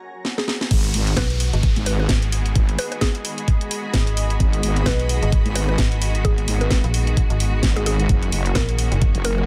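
A swaggering, aggressive bass house groove at 130 BPM in G# minor, swung on the 16ths, kicks off with a garage drum fill of cracking snare and bright hats. At 0.7 seconds it drops into a knocking, tape-warm kick up front, a heavy, saturated wobble bass, a dark metallic FM bass arriving at 1.2 seconds, distant bowed strings and a cloudy granular pad pumping under the sidechain over G#m7, turning to F#6 at 8.1 seconds. A woody, round synth pluck with phaser and dub echo sits in the background alongside a brief electronic downlifter, all set in a digital ambience in this cut from a longer piece.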